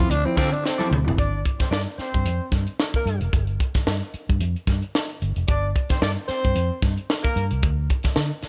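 Funk with a sly, driving swing, where a gritty, growling tenor saxophone solo opens over a twangy, slightly broken-up electric guitar with lush chorus and mellow tine electric piano stabs until 1.2 seconds, when a smooth-topped horn section with analog delay takes up the second line, while a dark, foam-muted fingered bass and a punchy, up-front fusion drum kit with a high-tuned snare drive on through a small, pumping room.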